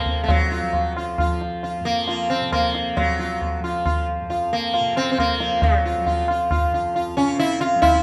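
A plectrum-plucked, buzzing sitar rings out up front with shimmering sympathetic strings over a softly plucked, warm tanpura drone, joined at 0.1 seconds by a high-tuned, ringing tabla heard close and dry, in this meditative, radiant Hindustani classical excerpt at 135 BPM in 3/4 within a reverberant recital hall.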